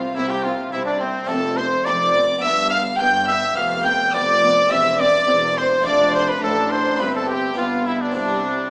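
Heard through a small speaker in a wet recital hall, this short, festive baroque-style concerto passage in C major moves at a lively 105 BPM in 4/4, with a bright, up-front solo trumpet and a distant, dark viola section both entering at 0.2 s, alongside a gut-strung, period-style violin section carrying the melody, a second violin section playing a background line, a smooth-topped cello section and a rich double bass section holding the bass, and a round, Flemish-style harpsichord plucking behind, as the chords resolve to C at 8.1 s.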